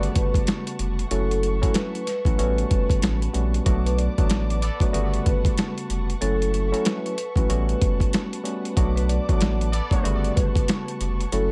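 A gritty, overdriven sampler-style drum kit with a thumpy kick sits up front in this moody boom-bap hip-hop excerpt, joined by a deep, round dub sub bass, a worn, slightly out-of-tune tine electric piano, a ringing vibraphone melody with slow motor vibrato, lush bowed strings, and brief trumpet-section stabs in the background at 4.6 and 9.7 seconds, all in a light reverb.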